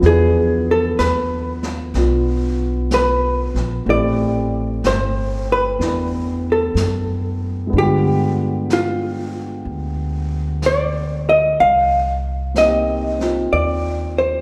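A roomy concert-hall sound with a long, wet reverb surrounds this intimate, late-night jazz ballad excerpt, which moves at a slow, swung 62 BPM in 4/4 through E5, Am9, G7b9 and Cm7. Up front, a dark, clean, compressed, picked hollow-body electric guitar carries the melody from 0.1 s. Beneath it, a warm concert grand piano with a deep low end plays accompaniment, a woody pizzicato upright bass holds the bottom, and a distant brush kit on snare and hi-hat sits softly in the background.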